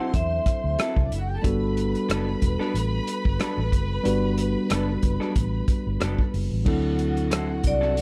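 A lightly swung sixteenth-note 4/4 groove from a dry, tight-kicked soul drum kit with dark cymbals and rim clicks, plus a round, foam-muted electric bass, carries this smooth, romantic 1970s-style soul excerpt. Over it sit a clean tine electric piano, a slightly broken-up, lo-fi guitar riff and a lush bowed string section with expressive vibrato, while a ringing, metallic vibraphone melody on hard mallets appears at the start and returns at 7.7 seconds, all over D9 and Gmaj9 chords in a close, dry room.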